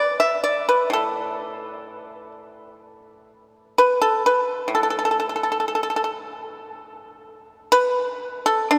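Flowing and serene, this short cut from a longer Chinese traditional piece features a solo pipa in a free, rubato 2/4 at roughly 58-65 BPM. Played with fingerpicks across a range from A2 to E5, the acoustic pipa sounds percussive and up front, with a warm, dry attack. It sits within the long, wet cathedral-like reverb of a church or concert hall, and the music shifts into a new section at 6.7 seconds before ending at 8.8 seconds.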